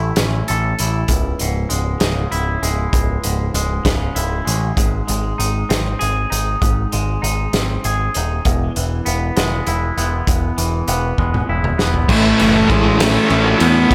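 Dark and brooding, this short passage of quiet-loud alternative rock rolls along in a steady 6/8. A clean, twangy electric guitar plays fingered arpeggios up front, bathed in spring reverb, over a growling, overdriven picked bass and a loose acoustic drum kit with a fat snare, punchy kick and dark cymbals in a pumping studio room. A drum fill at 11.2 seconds leads into the louder passage at 12.1 seconds, where the arpeggios stop and a heavy wall of guitars takes over: two thick fuzz guitars and a bright, double-tracked overdriven guitar with tremolo play riffs in the background. Above them a single bowed cello carries a reedy, gut-string melody, while a very quiet principal pipe organ holds smooth sustained chords with a touch of chiff. Apart from that spring reverb, the sound is dry and close, and the clip is cut from a longer piece.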